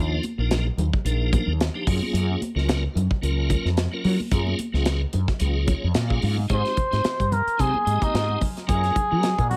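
Soaring and funky, this short electric jazz fusion excerpt rides a light sixteenth-note swing in 4/4. A tonewheel organ offers a piping, scooped, clean tone, its key click audible through a slow rotary speaker and chorus vibrato, and it plays a fill at 5.4 seconds. Up front, a fretless electric bass sounds dark and round with an ensemble chorus, while a modern studio drum kit brings a punchy kick, a medium-tuned snare and hi-hat with a rolled-off top. High-tuned congas ring softly in the background, close and dry. At 6.5 seconds a cup-muted trumpet takes the solo, mellow and veiled with vibrato and a roomy plate reverb, as the harmony moves from Ebmaj7sus2 and Gbmaj9 to Abmaj7 and Gbmaj7 under a light reverb.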